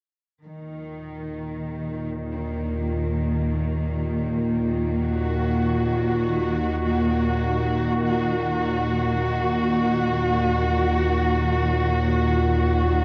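Floating in free time, this unsettling dark ambient drone settles on E-flat minor, with a close, intimate cello section entering at 0.5 seconds to hold sustained chords, bowed sul tasto with a soft attack and vibrato. At 1.2 seconds a tense, string-like, wave-folded drone joins low beneath it, up front and bathed in its own reverb, while from 2.3 seconds an eerie, inharmonic detuned synth bell traces barely audible arpeggios. A cavernous cathedral reverb and the warbling pitch drift of worn cassette tape lend this cut from a longer piece a haunted, decaying cast.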